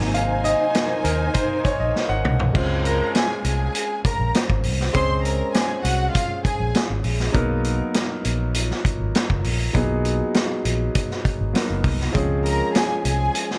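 Lush 1970s-style soul at 100 BPM in Db major, smooth and warm, with a clear, intimate grand piano carrying the accompaniment, a drum fill at 1.9 seconds from a gritty, saturated vintage kit with dark cymbals and a punchy kick, a round, foam-muted electric bass up front, a mellow vibraphone ringing softly in the background, and a lush, bowed violin section with vibrato that drops out at 6.7 seconds and returns at 12.4 seconds, all in light studio reverb in this excerpt cut from a longer piece.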